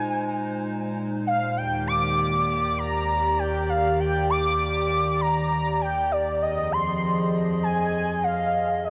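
A velvety, detuned synth lead carries the melody with chorus, delay and smooth portamento over a warbly, tape-like pad whose sustained chords carry chorus and lo-fi sampler grit, moving from Bb9sus4 to Ebmaj7 and then Fm7 in this melancholic, glitchy IDM excerpt, all set in a huge ambient reverb with a dark, warm production.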